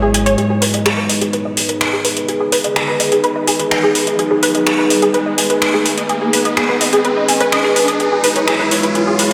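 Melodic techno at 126 BPM in G# minor, driving and cinematic, cut from a longer piece and built as one long build-up. A deep, moody pad holds sustained chords throughout, its sawtooth and sine layers with a sub octave and wave-folding giving a dark body, softened by chorus and its own reverb. Over it a lush, bright unison pluck plays arpeggios with a punchy, fast attack and decaying tail, spread by ensemble chorus and a diffuse ambient delay, while a filter sweep runs across it from 0.4 seconds onward. The deep house drum kit sits up front with finger snaps and metallic, overdriven hats, re-recorded in a large room, and an electronic riser enters at 2.7 seconds to push the tension. The harmony moves from G#m to E6/G# near the end, and the whole mix is dreamy and soaked in a lush hall reverb.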